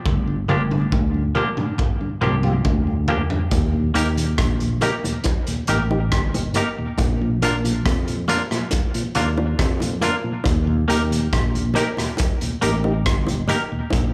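Laid-back and uplifting, this roots reggae excerpt moves at a relaxed 69 BPM in 4/4, heard as a live gig through the venue's PA with club reverb, and it opens with a drum fill that runs to 3.5 seconds over a Gm7 chord. A crunchy, gritty breakbeat kit with a tight kick, hi-hat, rim click and toms sits up front beside a growly, bright fretless electric bass, while a clean, hollow-body semi-hollow guitar carries dub and slapback echo. In the background, a mellow, round tonewheel organ turns through a slow rotary speaker with key click and tape echo, and soft-handed, low-tuned bongos join at 3.5 seconds as the chords shift through Eb and Bb.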